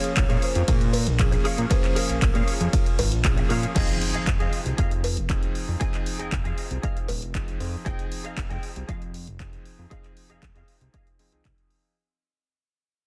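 Sensual and groovy, this 117 BPM nu-disco excerpt in F minor rides a punchy, up-front electronic kick and a fat, detuned sawtooth analog bass under a house kit of handclaps, hats and cymbals, a background cowbell, a clangy electric grand piano pumping through a low-pass filter, a twangy, chorused clean guitar riff, a brief metallic vibraphone melody with gritty sampler texture that stops at 3.2 seconds, and a very quiet impact at 3.9 seconds as the chords shift from Bbm7 to Fm7 into a fade-out.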